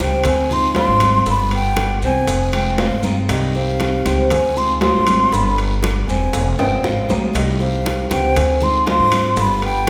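A breathy concert flute carries the melody from the opening moment over a woody, thumpy upright bass played pizzicato up front, in this sultry, danceable Cuban son and guajira cut from a longer piece in C harmonic minor at 118 BPM in a straight 4/4. Beneath them, a bright fingerpicked flamenco guitar adds a second line with audible finger squeak, while a picked steel-string acoustic guitar supplies accompaniment in the background and a Cuban tres spins metallic arpeggios on its doubled strings. The flute sings with vibrato, tongued notes and lifted highs, giving it an expressive lead voice. Thick-skinned congas and grainy maracas sit close and dry at the back, joined at 0.2 seconds by tight, high-tuned bongos and ringing metal-shell timbales, with a raspy guiro entering at 0.3 seconds. The harmony cycles through Dm7b5, G7, Fm and Cm, and a drum fill runs from 6.6 to 7.3 seconds. The whole ensemble sits in a reverberant recital hall whose 1.7-second decay gives the acoustic instruments a spacious, churchlike bloom.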